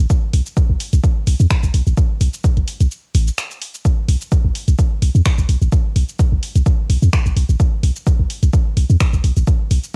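Minimal techno at 128 BPM with a light 16th-note swing, hypnotic and quirky, built on a deep, sine-toned sub bass with a pitch-drop attack and sidechain pumping, an overdriven, up-front electronic kick, and a dry analog drum machine of cabasa, finger snaps and hi-hat colored by cassette tape saturation, all in a close, home-recorded cassette sound, with a brief break from 2.9 to 3.8 seconds before the groove returns in this excerpt cut from a longer piece.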